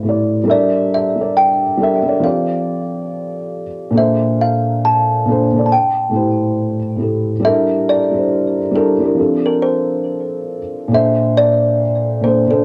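Swung 16ths at 69 BPM in 4/4 carry this reflective, hazy lo-fi hip hop excerpt: a dark, boxy, felt-muted upright piano with audible action noise plays accompaniment from the start, and a woody, ringing kalimba with a thumbnail pluck takes the melody at 0.5 seconds, both up front and dulled by cassette tape and a low-pass filter, with plate reverb on the kalimba alone, over chords cycling Gm69, F69, Bbmaj9 and Am7 in a tuning of A4 = 436 Hz.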